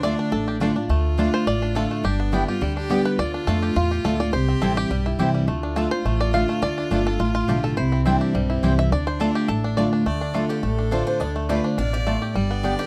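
A twangy five-string banjo solos from the very start of this rustic, haunting bluegrass excerpt. Its fingerpicked melody rides over a bright, full-bodied steel-string guitar and a thumpy, woody upright bass, both up front, along with round mandolin stabs and a smooth, clear fiddle carrying a second line with light vibrato. At 10.1 seconds the tune moves into a new section, and at 10.5 seconds a boxy, swing-style picked acoustic guitar adds a melody from the background, all captured in a dry, close 1970s-style studio sound with light reverb.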